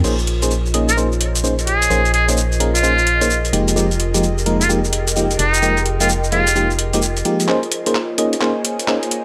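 Skippy and bouncy, this swung two-step UK garage clip pairs glassy, chorused FM electric piano stabs under a filter sweep with a hollow, up-front organ-like FM bass and gritty, pitched-down sampler drums of hi-hat, handclaps, cabasa and crash, while a buzzy, intimate trumpet with a metal mute plays a jazz-style solo line from 0.9 s over an airy pad and a nostalgic, lo-fi tape-like pad, before a build-up and drum fill arrive at 7.5 s.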